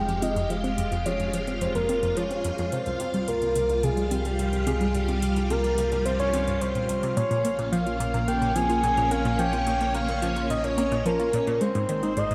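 Over a straight 4/4 pulse at 108 BPM, a tight sequenced synth drives a nasal, detuned sawtooth riff with a filter pluck and moving notch. Beneath it, metallic electronic hi-hats and congas, tape-warm and re-recorded in a small room, sit low in the mix with analog delay. This is expansive, mysterious space music in F minor, cut from a longer piece, with a round, deep analog bass holding the bottom between F1 and C2. A lush, vintage string machine spreads sustained full-ensemble chords up front, its slow attack and ensemble chorus giving the harmony a broad body as it moves from Fmadd9 to Csus4, Bbm and Ab. On top, a soft octave-layered lead sings a dark, sustained melody between G4 and Ab5, coloured by vibrato, chorus, cassette-tape character and analog delay. A wet spring reverb with a 2.5-second tail and an echo-heavy mix wrap the whole passage in a hazy, drifting space.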